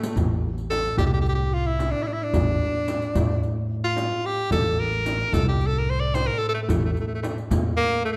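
Hypnotic and soulful, this short fragment from a longer Arabic maqam ensemble piece opens on a drum fill and settles into a straight four. An edgy tenor saxophone carries the melody up front as the soloist, its pop-styled phrasing full of vibrato and scooped notes. Beneath it, a very quiet bowed double bass holds a shadowy drone with vibrato, while a plucked upright bass with steel strings enters at 0.2 seconds to supply a woody bass line. The percussion sits in the background: a deep, clay-shelled darbuka played with hard hands sounds distant in a large room, a small, bright frame drum echoes from afar, and a riq with dark jingles stays close and dry. A moderate recital-hall reverb and a dark, warm production wrap the ensemble together.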